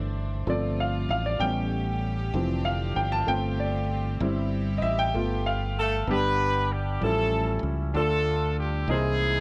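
A clear, jazz-style horn section doubled in octaves takes the melody with light vibrato from 5.8 seconds in this jubilant, soulful gospel excerpt in 6/8, arriving as a woody upright piano solo draws to a close over soft, floating bowed strings that stop at 6.1 seconds, while a round, punchy fingered electric bass holds the low end throughout in a small room with light reverb.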